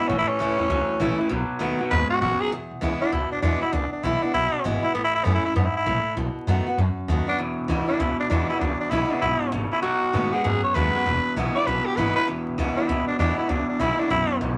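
A crackle of vinyl sits over a moderate studio reverb in this short, rollicking rockabilly cut, which swings its eighth notes with an upbeat feel. Up front, a raspy, growling tenor saxophone carries the melody as a pop-style solo, its gritty tone touched with light vibrato. Beside it, a full-bodied steel-string dreadnought is picked as accompaniment, its fresh strings sounding bright and letting a finger squeak through. Underneath, a woody, thumpy upright bass with gut strings is plucked in a dark low register. A twangy, slightly broken-up, lo-fi electric guitar through a small old amp plays a low riff until 2.5 seconds, drops out, and returns at 7.4 seconds to run to the end, over changes that move among E, A and B7.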